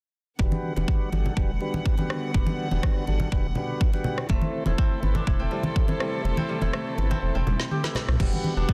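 Warm and earthy, this afro house passage cut from a longer piece rides a punchy, tape-warm electronic kick and a deep, round sine sub bass, both up front, the bass pumping under sidechain along with dark, floating bowed strings and mellow tonewheel organ stabs turning through a slow rotary speaker, filtered and delayed. Low-tuned, damped congas thicken the groove from the start, an electronic afro-pop kit with a woody, softly clipped snare, rim clicks, toms and crash joins at 2.1 seconds, and a bright, crisp fingerpicked kora enters with ringing delayed arpeggios at 4.3 seconds. The kick drops out at 6.2 seconds, leaving the other parts to carry on into a drum fill before the harmony returns to Gmaj7/E, all set in digital ambience within a dense, heavily limited modern master.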